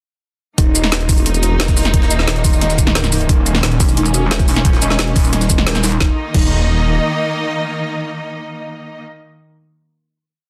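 A swirling, thick detuned saw bass with phaser and sidechain pumping drives this tense, aggressive piece of dark technical drum and bass, playing chopped, saturated phrases from 0.6 seconds. At 3.8 seconds a heavy, pulsing pluck wobble bass with chorus takes over with modulated phrases of changing wobble speed, answering the other bass, which returns briefly at 6.0 seconds. Beneath them, an overdriven, knocking electronic kick and a tight, layered kit with a woody snare, bright hats, shaker and crash drive the drop, while a very quiet, gritty jungle breakbeat loop with a high-tuned snare sits far back in a large room. A lush bowed string section with vibrato holds sustained chords, and an eerie, inharmonic FM bell repeats a 16-step arpeggio sequence through chorus, phaser and dub echo. The drop ends on a band accent before a final chord, with the strings sustaining it, set in light reverb within a dense, heavily limited modern master.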